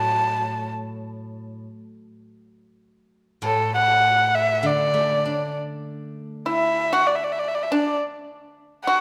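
A short erhu phrase and the bright, ringing steel-string zither open this festive, graceful excerpt of Chinese traditional chamber music, set in a D gong mode at a rubato 100 BPM in 2/4. The erhu, played by a single musician, returns to carry the melody from 3.4 seconds, close and up front with a nasal, airy bowed tone, light vibrato, soft attacks and portamento. The silvery zither accompaniment gives way at 6.5 seconds to a dry, percussive pipa second line, all in a moderate concert hall reverb.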